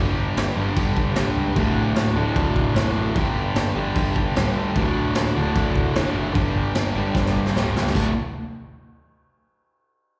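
A fuzz guitar riff opens this swaggering, raw garage rock excerpt, with a growling picked bass and a very quiet, buzzy combo organ holding sustained chords under it, and the gritty, punchy drum kit joining at 0.4 seconds. The double-tracked, compressed fuzz guitar and saturated drums sit up front, while the bright, overdriven bass stays in the background and the organ, touched with light vibrato, adds a fill at 3.6 seconds. Chords move between G and D before a drum fill at 7.2 seconds leads into a new section, all heard as a live gig through the venue's PA with recital hall reverb.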